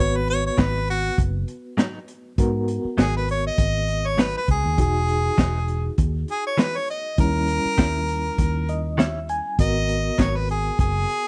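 A straight-eighth groove at 100 BPM in 4/4, with a light sixteenth-note swing, drives this brooding, soulful soul-blues excerpt in G# minor, built on a crunchy breakbeat kit that enters at 0.3 seconds with a punchy kick, a high-tuned snare, hi-hat and a gritty, saturated small-room sound. Up front, a warm harmonica carries the jazz-style solo melody with light vibrato and scooped notes, over a round, foam-muted fingered bass and a reedy electric piano whose fast tremolo colours the G#m7, Emaj7 and D#7b9 changes before it plays a fill at 8.4 seconds. A clean, compressed direct-recorded electric guitar adds picked stabs with tremolo from 0.6 seconds, all captured in a dry, close 1970s-style studio sound.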